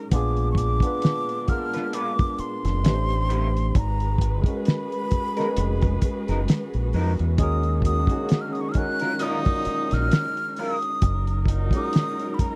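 A dry, close 1970s-style studio sound frames this sultry, soulful neo-soul and R&B passage in Eb minor, moving at a slow 66 BPM with a swung sixteenth feel. A muffled, cloth-damped drum kit with a fat snare and tight kick sits up front beside a round, deep dub fingered bass, while a barky, lightly overdriven tine electric piano and a bowed string section with portamento carry the chords under a breathy, expressive concert flute melody touched by slapback echo. A dark, slightly broken-up electric guitar with analog chorus adds a second line from 1.7 to 10.8 seconds, and a distant, roomy horn section plays stabs from 7.8 seconds.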